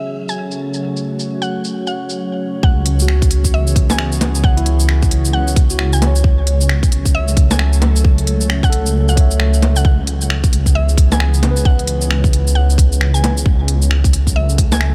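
Rainy and wistful, this future garage excerpt sways on a swung 4/4 groove. It opens with a warbling, nostalgic tape-like pad under a filter sweep, carrying dark sustained chords with chorus and its own reverb. Above it, a woody, round mallet-like synth pluck sings a short high melody through chorus and tape echo. Further back, a barky tine electric piano, lightly overdriven through a combo amp, adds accompaniment with analog delay and sidechain pumping, while an organic electronic kit of bongos, finger snaps, smooth hi-hat and shaker stays muffled by low-pass filtering. At 2.6 seconds a tight, tape-colored electronic kick and a deep, rumbling detuned saw bass arrive up front, the bass and pad both breathing with sidechain pumping, as the harmony moves between C#m7 and F#m/C#. The electric piano drops out at 13.5 seconds, and the whole piece sits inside a digital ambience.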